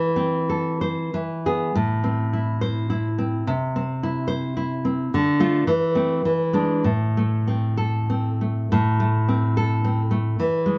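A fingerpicked nylon-string guitar opens alone on an A minor chord over E, setting an intimate, passionate tone for this romantic solo classical guitar piece in triple metre. The playing is rubato, moving through a short progression of A minor, E, C, D minor and an E7 before settling back on A minor near 6.9 seconds. The instrument sits up front, its fresh strings giving a warm acoustic tone over a deep classical body, and an occasional finger squeak brings the player close. Its range stretches from A2 up to C5. A light reverb surrounds the guitar, and lossy compression artefacts mark the sound, with the opening section returning at 8.7 seconds before this fragment of a longer piece breaks off.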